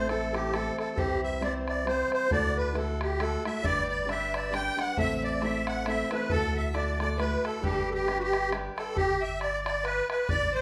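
A rollicking Celtic waltz in G major at 135 BPM opens with a reedy, shimmering musette accordion carrying the melody up front over fingerpicked steel-string acoustic guitar, a deep, thick saturated sub bass and a boomy, open bodhran, all in a lively swung 3/4 within a large, reverberant room, before a clear, biting fiddle with light vibrato joins as a second line at 3.6 seconds and the guitar drops out at 9.0 seconds in this short excerpt.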